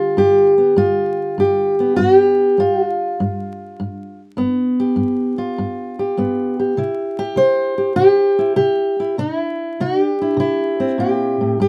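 A fingerpicked steel-string acoustic guitar with a dark, woody tone and the dull bite of old strings plays alone and up front in this gritty, laid-back country blues excerpt, swinging in 4/4 through a G7 chord before moving to C at 6.8 seconds, framed by light reverb and a haze of vinyl crackle.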